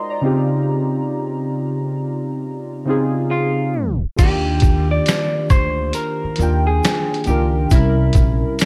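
A digital ambience wraps this cosy, dreamy lo-fi hip hop passage, cut from a longer piece, moving at 68 BPM in 4/4 with a swung 16th-note feel in E-flat major. Warbling, detuned synth keys blending triangle and sawtooth tones sit up front from the start, mellow and nostalgic under chorus, a low-pass filter and a filter sweep, opening on a Dbmaj9#11 chord. At 3.3 seconds a picked electric guitar through a small old amp takes the melody, slightly broken-up and softened by its own low-pass filter, and a tape stop effect arrives at 3.7 seconds. From 4.2 seconds the groove settles in with a gritty, compressed boom bap sampler-style kit, pitched down and re-recorded in a large room, with a thumpy kick, medium-tuned snare, hi-hat, finger snaps and crash cymbal. A woody, growly pizzicato upright bass joins, with an egg shaker and woodblock tucked in the background, as the harmony moves to Ebmaj9 and then to C7b9.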